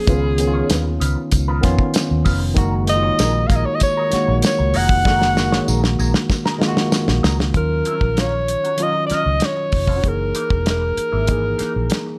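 A breathy alto saxophone with scooped notes, vibrato and slapback echo carries the melody up front in this smooth, warm 1970s-style soul excerpt in F# major at 96 BPM, over a worn, slightly out-of-tune tine electric piano, a mellow, compressed wah guitar riff in the background, a round, foam-muted fingered bass, a dry, damped drum kit with a tight kick and a fill from 5.1 to 7.5 seconds, and a jingly tambourine that drops out at 7.4 seconds, set in studio reverb.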